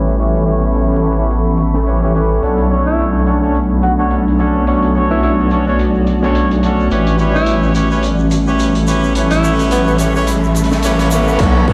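A swung 4/4 glitch hop groove at 107 BPM sets a funky, swaggering mood in this excerpt, where a heavy, saturated wobble bass sits up front under a warbly, nostalgic tape-like pad with 12-bit grit and sidechain pumping, brilliant horn stabs with octave doubling, tape echo and a filter sweep, a blurred granular cloud pad, a dark, crunchy breakbeat kit and a grainy tube shaker in the background, while a raspy, growling tenor saxophone carries the melody from 2.9 to 9.9 seconds over A7 and Bm7 chords before a riser and a punchy electronic kick arrive at the close, all in a dreamy, reverb-soaked, low-pass-filtered mix.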